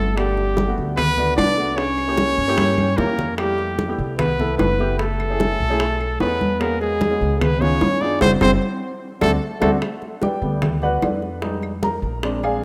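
Afro-Cuban jazz with a sunny, danceable feel, cut from a longer piece and heard in a rough home demo mix with lush hall reverb. A clear, punchy trumpet carries the melody up front with scooped notes and light vibrato, while a mellow, close-miked trombone plays a second line beneath it. A worn baby grand piano accompanies, a dark, thumpy pizzicato upright bass anchors the low end, and bright congas, tight high-tuned bongos in the background and very quiet woody claves keep the percussion going, with drum fills and a band accent leading to 9.8 seconds, when the horns fall away and the piano solos until 12.6 seconds.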